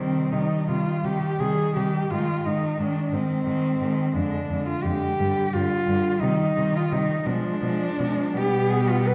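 Classical and elegiac, this melancholic excerpt for cello ensemble moves in a slow, rubato 6/8 at 58 BPM in C minor, with a warm, close bowed cello singing the melody up front with vibrato and portamento, a rich second cello tracing its expressive line further in the background, another warm, soft-attacked cello carrying the accompaniment, and a smooth, even bass cello anchoring the harmony from Cm through Ab and a Bdim7 to G/B at 8.4 seconds, all heard from further back in a recital hall with a wet reverb.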